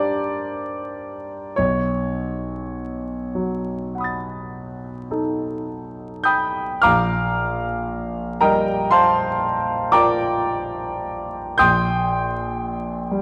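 Impressionist solo classical piano, luminous and dreamy, this passage is cut from a longer piece and moves slowly in 9/8 at roughly 33-40 BPM counted in dotted quarters, with a free, rubato feel in Bb major. A clear concert grand plays alone for the full 13.2 seconds, spanning from Bb1 in the deep bass up to A6, and sits up front with an open character. The harmony drifts through colorful chords, opening on G5 and B9, then reaching Bb6 at 6.8 seconds as the opening idea returns, and settling on Cm7/Bb at 11.6 seconds. A moderate scoring-stage reverb gives the piano a gentle halo, while a layer of vinyl crackle lends the recording a faintly aged, nostalgic patina.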